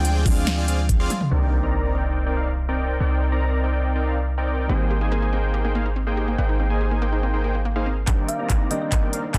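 A dense, heavily limited modern master with light reverb frames this bittersweet, lush future bass excerpt, cut from a longer piece and moving in a half-time feel. Huge, detuned supersaw chords carry the riff up front through nearly the whole passage, sitting over a boomy, sine-based 808-style bass with tube saturation and sidechain pumping, while a dark, vintage-toned concert grand piano plays accompaniment in the background. The opening drop brings a knocking electronic kick and an overdriven dance kit with punchy snare, crisp hats, handclaps and toms, as a round, tine-like thumb-piano-like synth pluck with chorus, phaser and tape echo states the melody and a very quiet, airy lead adds brief arpeggios. A sub drop and riser mark the impact at 1.3 seconds, and from 4.7 seconds a bright, wave-folded unison pluck adds arpeggios as the harmony shifts from Cm9 to Abmaj9. The drums return at 8.1 seconds for a fill and build-up, with a filter sweep on the synth pluck as the chords come back to Cm9.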